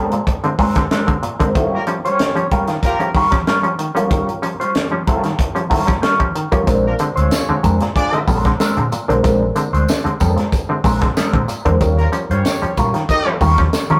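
Funk excerpt at 94 BPM with a funky, playful mood, where a mellow, dark electric guitar with wah and spring reverb plays accompaniment over nasal, overdriven muted clav stabs and a tight drum kit with a high-tuned snare, a punchy horn section with light vibrato and octave doubling enters at 1.7 seconds on a second line, and a round, foam-muted vintage bass and a jingly tambourine both join at 6.7 seconds, all moving between Bb9 and Eb9 in a rough rehearsal-room sound with tube saturation and wet reverb.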